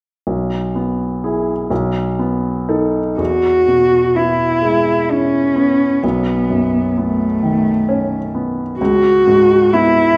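Romantic classical duo in E major, tender in mood, moving at a rubato 64 BPM in 3/4 time, in which a clear, intimate baby grand piano opens the excerpt alone at 0.3 seconds with accompaniment whose audible action noise lends a natural closeness. At 3.2 seconds a single bowed cello enters up front with a dark, woody melody shaded by vibrato, sitting louder than the piano as the harmony passes from E through B9 to C#m7. A moderate recital hall reverb surrounds the two players.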